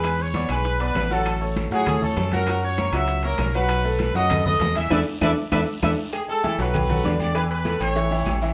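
A straight salsa groove in 4/4 drives this joyful, festive clip from a longer piece, built on high-tuned congas, round low-tuned bongos and cowbell struck with hard hands, ringing vintage timbales and agogo bells, woody claves, a raspy guiro and grainy maracas. A punchy trumpet section with light vibrato carries the melody up front, supported by a clear baby grand piano and a bright fingered electric bass, all set in a moderate large studio reverb. The band hits an accent at 4.9 seconds, with a drum fill following at 5.2 seconds, before a new section opens at 6.1 seconds and resolves onto A.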